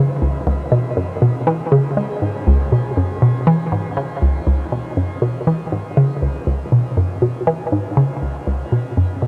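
A cassette-tape grain colours this short passage, cut from a longer piece, and a moderate shimmer reverb with an 8.0-second tail opens the space out. It is a mysterious, expansive ambient cue in C# minor at 120 BPM, in a straight 4/4, tuned with A at 441 Hz. A single square-wave pluck plays alone from start to finish, moving between C#2 and G#3 with a fast attack and short decay from its filter. Its tone is hollow, bouncy and mellow, sitting up front in the mix, while chorus, phaser and tape echo add movement and trails to the notes. The material shifts to a new section at 2.5 seconds and carries on until the cut at 9.3 seconds.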